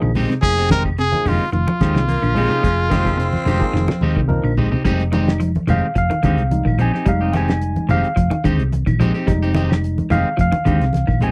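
A bright, up-front trumpet carries the melody with vibrato in this hypnotic, defiant afrobeat excerpt at 108 BPM in F dorian, built on an Fm9 chord. A raspy, gritty baritone saxophone joins beneath it at 2.1 seconds with a second line, and both horns drop out at 4.3 seconds as a drum fill leads into the next section. From 4.9 seconds the barky, lightly overdriven tine electric piano, heard through a combo amp, takes a solo after comping from the start. Two electric guitars fill the middle: a clean, picked one with analog chorus plays arpeggios in the background, while a twangy, slightly broken-up one with phaser adds stabs. A round, hollow-body short-scale bass anchors the low end with a cloth-damped drum kit that has a fat snare, a tight kick and a rolled-off top, while very quiet, low-tuned congas and distant, woody claves add percussion. The sound is dry and close, with little reverb, in a 1970s studio style.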